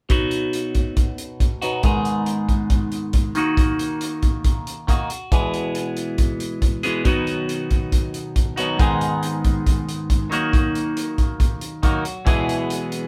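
Recorded with a light reverb, the band sounds as though it is playing live together in one room, giving this short indie rock cut a loose, immediate feel. At 138 BPM in a straight 4/4 and set in B major, the mood is carefree yet wistful, moving through B, G#m, D#m and E before closing on an Eadd9. A crunchy overdriven electric guitar carries the riff from the start, its bright, picked tone colored by a phaser and placed up front. The loose acoustic drum kit, with its tight kick, hi-hat and a rolled-off top, sits up front as well and has a small-room character. At 7.0 seconds a twelve-string electric guitar joins with its own picked riff, bright, clean, compressed and twangy, adding a chiming shimmer alongside the overdriven part until the piece is cut off at 13.1 seconds.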